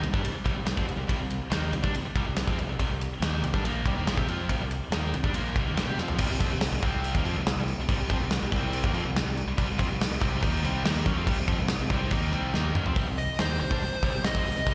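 A growly, fuzz-soaked fingered bass drives this menacing hard rock passage in C minor at 141 BPM, up front beside a gated 80s drum kit with a tight kick and a medium-tuned snare. A bright, double-tracked distorted guitar riff carries slapback echo, while drum fills at 6.0 and 12.5 seconds mark the turns between sections. At 13.2 seconds a dark, smooth overdriven lead guitar enters for a brief solo, all of it heard as a live gig through the venue's PA with the reverb of a recital hall.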